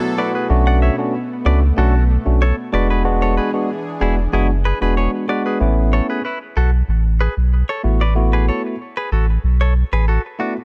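Sunny and breezy, this afrobeats excerpt in A major moves at 94 BPM, with a round, up-front sub bass anchoring a clean tine electric piano accompaniment, a bright, twangy direct-recorded guitar riff carrying tape echo, and a thick, detuned sawtooth pad with chorus sitting in the background until 5.6 s, as the harmony shifts from Bm7 and E7 to Aadd9 and a rootless D6/A in a studio reverb.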